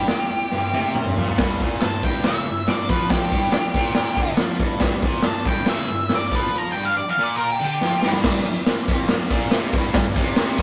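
Garage rock with a rowdy, raw edge, this short excerpt drives along at 140 BPM in a straight 4/4, opening on a G5 chord with a picked, up-front octave-fuzz lead guitar carrying the melody until 8.1 seconds over a thick, double-tracked fuzz guitar riff that bites with a bright, distorted grind. The acoustic drum kit sits up front with a punchy kick, a medium-tuned snare and a dark, rolled-off top, using crash, ride, hi-hat and toms, with fills at 0.5 and 7.8 seconds. After the lead drops out, the riff and drums shift to an Fsus24 chord at 8.2 seconds, all captured in a rough rehearsal-room sound with tube saturation and a moderate stone room reverb.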